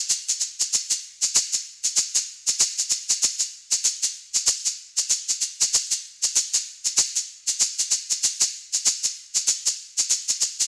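A grainy, mellow tube shaker sits up front in a live room, carrying this sunny, hazy indie pop fragment at 96 BPM in 4/4 with a gentle swing on the sixteenths. It plays throughout, from 0.1 to 10.7 seconds, as the only part. A light studio reverb and the soft wear of a home cassette recording give the sound a dusty, intimate glow.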